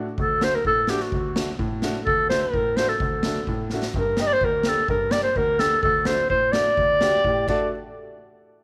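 A straight 2/4 pulse at 127 BPM drives this short, soulful and festive klezmer excerpt, where a dark upright piano with woody action noise sets up the harmony on its own from 0.0 s before an airy street-band drum kit, with a boomy kick and dark cymbals, joins and adds fills at 3.7 and 7.5 seconds. Up front, a breathy clarinet carries the melody with light vibrato, scooped notes and an intimate, whispered jazz-style tone over chords moving from D to G minor and back. A mellow trombone slips in briefly as a second line at 7.0 s, all set in light studio reverb.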